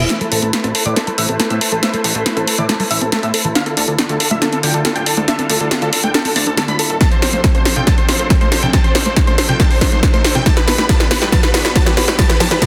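Uplifting trance build-up, driving and emotional, in which a huge, euphoric supersaw lead carries the melody through dub echo over a catchy, detuned plucky unison lead, a soft-attack filtered supersaw swell holding chords, a dark, chorused sequenced arpeggio, a funky plucky analog bass and a very quiet reverse cymbal and riser, while filter sweeps move across the supersaws and arpeggio, an overdriven analog drum machine plays a hi-hat and snare fill, and a punchy overdriven kick drum enters at 7.0 s, with the synths and bass sidechain-pumped into a dense, heavily limited master.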